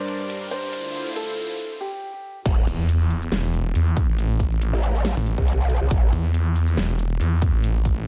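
Heavy and menacing, this half-time wobble dubstep excerpt at 139 BPM in A phrygian opens with a dark, mellow grand piano melody through digital delay, a lush, pumping supersaw pad over Gm and Dm7, and a tape-warm dubstep kit with a huge snare and metallic hats. A riser builds until a break at 1.6 seconds, then the track drops at 2.5 seconds into A5 with an impact, a punchy electronic kick and two up-front growling basses: a bright, wobbling, chorused formant growl, joined moments later by a snarling distorted sawtooth with a moving notch, all in a dry, dark, high-passed production.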